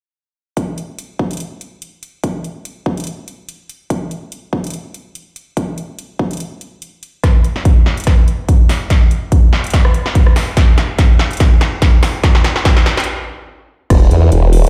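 A half-time heavy wobble dubstep groove at 144 BPM with a 16th-note swing opens at 0.6 s, driven by a punchy, up-front electronic kick and a big-room dance kit of crash, hi-hat, rim click and a punchy snare with metallic hats, all heard in a large, bare-room studio reverb. After a short break, a long drum-fill build-up runs from 7.2 s before a sudden stop, giving the excerpt a heavy, chaotic drive. At 13.9 s a sawtooth-and-sine formant-sweep wobble bass slams in up front, compressed and overdriven with chorus, wobbling between E1 and E2.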